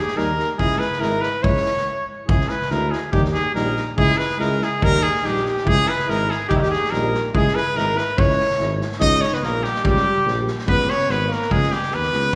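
In a swung 2/4 at 143 BPM in C# dorian sharp4, this fiery, restless Balkan brass band excerpt puts a clear trumpet with light vibrato up front, sounding distant and roomy, while a breathy, scooped alto saxophone in subtone plays a second line, dropping out briefly and returning at 4.8 seconds. A mellow, punchy tuba carries the bass over a street-band drum kit with boomy kick and medium-tuned snare, and a clear, vintage euphonium and soft-attack trombone add background accompaniment until about 8.8 seconds. After a short stop near 1.9 seconds, a new section arrives at 9.0 seconds on an A#m6 chord, all bathed in a wet scoring-stage reverb suggesting a church or concert hall.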